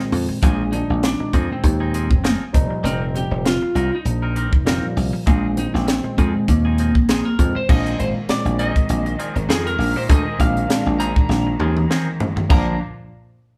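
Electric jazz fusion with a bright, slick mood, this short cut from a longer piece moves with a light sixteenth-note swing over suspended ninth chords. A crisp, polished drum kit sits up front with a high-tuned snare, tight kick, hi-hat, crash and toms, joined by a punchy, foam-muted thumbed slap bass that is equally direct and present. An overdriven tine electric piano with medium tremolo barks through a combo amp in the background, while a clean, twangy electric guitar adds compressed picked stabs. Over them, a lightly driven lead guitar carries the melody with a slightly broken-up, picked tone. At 7.7 seconds a rich bowed string section enters in the background with smooth, even sustained chords, and a drum fill from 11.3 to 12.5 seconds leads to a resolving Bb chord, all set in a moderate studio reverb that sounds like a band playing live in one room.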